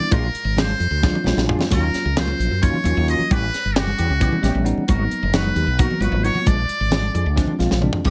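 A buzzy, thin trumpet with a metal mute carries the jazz-style solo melody from a distant, roomy spot, with light vibrato, over a funky, slick electric jazz fusion groove in 7/8. Bell-like tine electric piano comps and adds fills around 1.0 and 4.2 seconds, while a woody, round fretless bass and a tight funk drum kit with a high-tuned snare sit up front, the drums also filling near the end. Bright, damped congas and a twangy, compressed clean electric guitar playing stabs through an ensemble chorus sit in the background under a light reverb, as the harmony moves from Bb7b13 through Ebm9 and A9 to Abm7 and Bb7.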